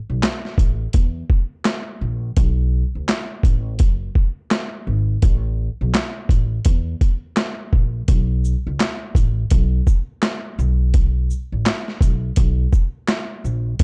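A woody, pizzicato upright bass with steel strings opens this gritty, tough boom-bap hip-hop excerpt, joined a moment later by a compressed, pitched-down sampler-style kit of thumpy kick, high-tuned snare, handclaps, hi-hat and shaker re-recorded in a large room, both parts up front over a swung 16th-note groove in a dark, dry production that moves into a new section at 8.1 seconds.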